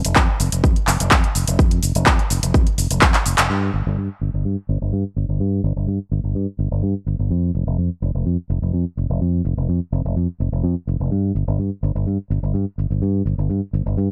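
The recording is dry and gritty, with little reverb, and every part sits up front. This feel-good, funky slice of filtered disco house, cut from a longer piece, moves at 126 BPM in a straight 4/4, tuned to A4 = 441 Hz. A fingered electric bass, warm and amped, carries the low end between F1 and G2, pumping against a sidechain and running through a low-pass filter. The layered, overdriven house drum kit, re-recorded in a large room, brings handclaps, hi-hat, shaker and crash cymbal, with its hats, percussion, snare, cymbals and room all low-pass filtered. A punchy electronic kick drives from 0.2 seconds until it drops out at 3.1 seconds, where a drum fill and a band accent lead into the next section. From 3.5 seconds onward, a filter sweep runs over the bass through to the end.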